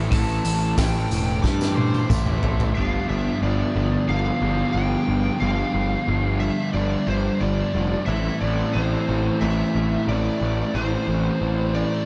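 Hazy and dreamy, this short cut from a longer shoegaze and dream pop rock piece moves in a straight 4/4 from Am7 to G7 before settling on Am. A loose indie drum kit sits up front with a punchy kick, fat snare and pumping room sound, joined by a very quiet, jingly tambourine. The drums play a fill from 1.4 s and drop out at 2.8 s. A thick, dark fuzz guitar riffs low with ensemble chorus, while a raw garage guitar adds an overdriven riff smeared by reverse reverb. Above them, a lead guitar through a small cranked amp carries the melody with tape echo, and a punchy, overdriven fuzz bass anchors the bottom from up front until 11.8 s. The whole mix is soaked in a huge ambient reverb and rolled off in the top end, giving it a soft, blurred glow.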